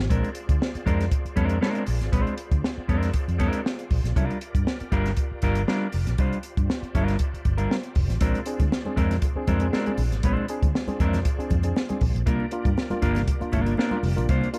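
Funk at 118 BPM in a straight 4/4, this gritty, energetic excerpt moves between Bb9 and C9sus4 over a compact cocktail drum kit with a punchy kick and high-tuned snare, a round, foam-muted fingered electric bass, and an up-front, clean electric guitar accompaniment, all in a dark production with light reverb. A bright tonewheel organ holds sustained chords in the background through a slow rotary speaker and chorus vibrato, its key click audible. After a brief touch at 0.0 seconds, a barky, reedy electric piano returns with lightly overdriven stabs at 8.2 seconds, joined by very quiet, close and dry congas played with soft hands.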